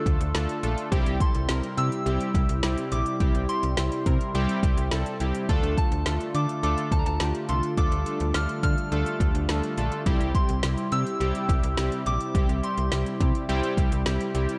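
Melancholic yet driving, this synth-pop excerpt moves between D minor and C over a deep house drum kit with a deep kick, woody snare and smooth hats set up front, while a snappy, metallic FM bass supplies the low end. Detuned, warbling analog keys with a noise layer and filter sweep play the accompaniment, bright and forward, and a smooth sawtooth-and-triangle pad holds long chords in the background. Above them a soft, pure FM synth bell carries the gentle, full-bodied melody, the bell, keys and pad all bathed in chorus and shimmer reverb within a dark, warm digital ambience.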